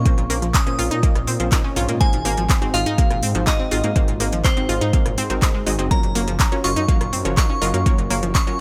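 Expansive and bittersweet, this short progressive house cut moves at 123 BPM in a straight 4/4, passing from Bbmadd9 through Ab7 to Gbmaj7 as a glassy, crystalline FM synth bell carries the melody with chorus and delay over a round analog pluck playing arpeggios and a lush, punchy unison pluck adding stabs, both pumping against the sidechain. Underneath, a dark detuned saw bass rumbles and beats with its own pumping, while a deep house drum kit supplies handclaps, smooth hi-hats and rim clicks. A deep, up-front electronic kick sits loudest in a dry mix with little reverb.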